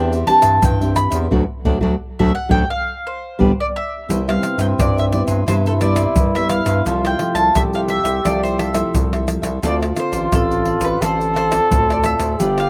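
A sunny, joyful samba-choro passage at 87 BPM in straight 4/4 opens in G major with an up-front, double-strung bowl-back mandolin leading over a crisp cavaquinho in the background, a thumb-plucked classical nylon-string guitar with audible finger squeak, and a thick, growling FM bass, while a close, dry percussion group of tube shaker, pandeiro, tamborim and deep surdo played with hard hands joins at 0.1 seconds and the band hits accents from 1.3 seconds; at 4.1 seconds the music moves to C major as a warm, jazz-style trombone enters with vibrato and scooped notes as a second line, all heard outdoors with little reverb in a fragment cut from a longer piece.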